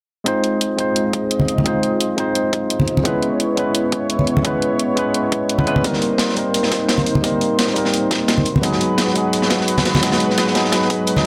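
A worn, slightly out-of-tune tine electric piano sits up front in this melancholic, rolling liquid drum and bass excerpt, its accompaniment passing through a low-pass filter and dub echo over an airy, detuned unison pad with chorus, while a filter sweep on an analog synth pad runs throughout. A tight electronic kick in the background and bright electronic hi-hats carry the groove from the start, distant hard-hand congas join at 1.4 s, and a gritty, saturated, mid-forward breakbeat kit with a medium-tuned snare arrives up front at 5.8 s. A moderate, lush hall reverb surrounds the mix.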